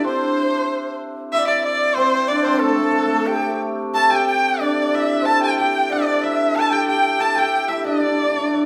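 This Chinese traditional chamber ensemble piece is festive and graceful, moving at about 93 BPM in 2/4 with a rubato feel, in the D shang mode and tuned to A4 = 442 Hz. A single bowed erhu carries the melody throughout its 8.7 seconds; its tone is clear and focused, sitting up front, with vibrato and portamento shaping the line. A bamboo dizi plays a second line in the same upper register, its breathy sound tinged by a buzzing membrane, tongued and vibrato-laden with a slightly unsteady quality. A hammered dulcimer adds another second line from a lower register, acoustic and up front, its struck notes shimmering and ringing. The three parts sound together in a reverberant recital hall, and the clip is cut from a longer piece.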